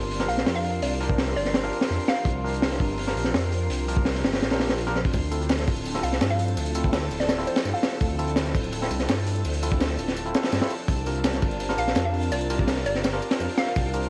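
Drum and bass with a jungle edge, nostalgic and dark, built on a crunchy, saturated breakbeat kit with a punchy kick and high-tuned snare up front, joined at 5.1 seconds by a compressed sampler-style break with tambourine tucked in the background. A deep, rumbling detuned saw bass sits beneath silky string-machine chords coloured by phaser and ensemble chorus, while a worn, slightly out-of-tune tine electric piano plays stabs through dub echo and a glassy texture of drifting overtones hovers high in the background. A hollow, bouncy square pluck carries the melody in short phrases, first at 0.3 seconds, and the whole piece carries the character of a home cassette recording.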